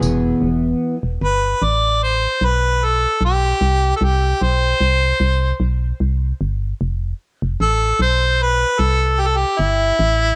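A gently swung 16th-note pulse at 75 BPM in 4/4 carries this reflective, tender pop fragment, cut from a longer piece and captured as a cassette home recording with light reverb. A double-tracked, full-bodied fingerpicked steel-string acoustic guitar opens the piece but drops out by 0.9 s, leaving a hollow, dark organ-like FM bass with fast, decaying notes to hold the low end until 10.3 s. From 1.2 s a clear harmonica sings the solo melody up front with light vibrato and a smooth top, over chords moving from E5 to C5 to Fadd9.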